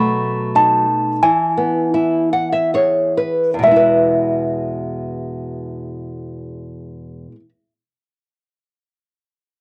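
A music box and nylon-string guitar open this gentle, sleepy lullaby excerpt together in a rubato triple metre that slows through its first 3.6 seconds, the tinkling, slightly out-of-tune box carrying the melody over the boxy, fingerpicked guitar, which adds a fill from 1.9 seconds as the chords move from B7 to E, all softened by cassette tape and light reverb in a homemade recording.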